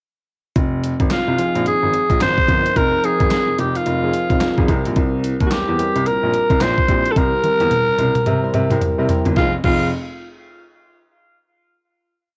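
This is a dry home recording on cassette with little reverb, and it captures a bouncy, slick new jack swing R&B piece in F minor at 109 BPM in 4/4, with a 60% swing on the sixteenths. From 0.6 seconds, a crisp 8-bit digital drum machine delivers a hard-swung, sampler-style beat up front: a thumpy kick, a medium-tuned snare layered with handclaps, hi-hat, crash cymbal and toms, all tape-warm and re-recorded in a large room. A clear, open baby grand piano takes the bass role alongside it, playing a bouncy, swung synth-funk line with muted ghost notes and long sustain. A raspy, gritty tenor saxophone carries a vintage, pop-style solo melody of motif-based call phrases, colored by a cassette tape effect. Warm, round analog keys add syncopated chord stabs in drop-2 voicings, blending detuned pulse and sawtooth tones with a filter sweep and chorus over a harmony that moves from Fm7 to C7. A drum fill arrives at 7.2 seconds, and the piece settles on a final Fm7 chord at 9.4 seconds.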